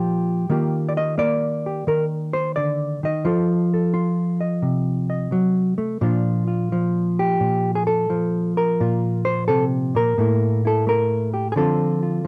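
A clean, dark-toned hollow-body electric jazz guitar plays alone and up front in this swinging, playful solo jazz fragment at 87 BPM in Bb major, moving through Ebmaj9, F7b9 and Bbadd9 to a Dm7 at 11.5 seconds, set in a moderate club reverb with a dusky production.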